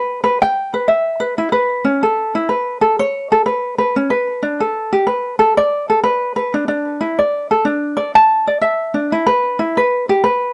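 A bright, up-front ukulele fills this brief, lightly reverberant clip, its acoustic tone sounding close and clear. Cut from a longer folktronica piece, it moves at 93 BPM in 4/4 with a gentle swing on the sixteenth notes, giving the line an easy, lilting sway. The ukulele plays alone for the full 10.5 seconds, thumb-plucked with a light touch across a range from C#4 up to A5. The mood is delicate and pastoral, like a quiet moment outdoors. Tuned slightly under standard pitch at A4 = 439 Hz, the instrument carries a soft, intimate character throughout.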